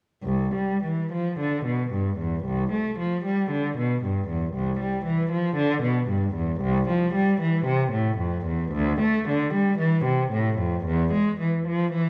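A single bowed cello, up front and smooth with vibrato, plays alone from 0.2 to 12.1 seconds in a serene, flowing, baroque-style classical movement with an unhurried rubato feel, its low register ringing into a recital hall's reverb while worn cassette tape adds a warbling pitch drift to this brief cut from a longer piece.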